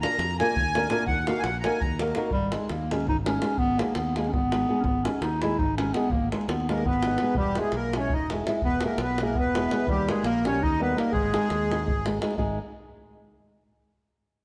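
Virtuosic and bittersweet, this short cut from a longer piece is a Balkan wedding-band tune in 7/8 at a brisk 334 BPM counted in eighths, set in G# harmonic minor with a straight feel. It opens with a reedy, sweet accordion solo carrying light tremolo tuning over a Bb and Ebm progression, before the dark clarinet takes the melody at 2.3 seconds with a smooth top and a classical poise, sitting up front in its lower register. The accordion drops out after its opening and returns at 6.7 seconds as a second line alongside the clarinet, through chords that move from G#m to E and D# before resolving to G#m. Underneath, a thumb-plucked flamenco guitar supplies dark acoustic accompaniment, a fingered electric bass adds a direct, warm low end, and a tight davul drives the pulse with a compressed, saturated punch. A moderate stage reverb gives the ensemble a sense of a sizable room.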